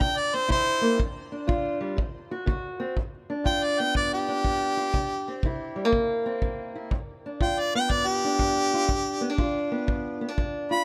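Swung eighths in 4/4 at 121 BPM drive this swaggering, laid-back acoustic country blues in G mixolydian, where a clear, up-front harmonica takes a jazz-style solo with light vibrato and scooped notes over a dark, boxy fingerpicked parlour steel-string guitar and a distant, roomy kick drum played with brushes, heard in a dry mix with little reverb.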